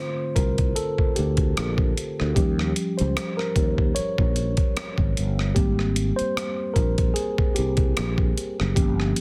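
Late-night and sultry, this short neo-soul R&B cut opens with a mellow, clean tine electric piano playing alone before a growly fretless electric bass, thickened by ensemble chorus, and a gritty boom bap sampler-style drum kit join at 0.4 s. The drums bring a thumpy kick, hi-hat and rim click with a tape-warm, compressed character, a large-room sheen and soft clipping on the snare, while the piano carries a solo over a lazy 16th-note swing and chords moving from Bbmaj7 to Eb7 to Abmaj9. All three parts sit up front in a dry, dense, heavily limited modern mix.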